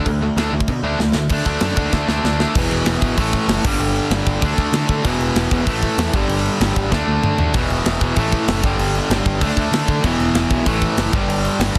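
Punk rock at 192 BPM in a straight 4/4, upbeat and rebellious, driven by a bright, overdriven guitar riff up front over a second, distorted guitar in the background, a growling picked bass, and a tight metal kit with punchy kick and bright cymbals whose fills at 1.0, 1.9 and 6.9 seconds push into a long section cycling D5, E5, A5 and G5 under light reverb and a dense, heavily limited modern master.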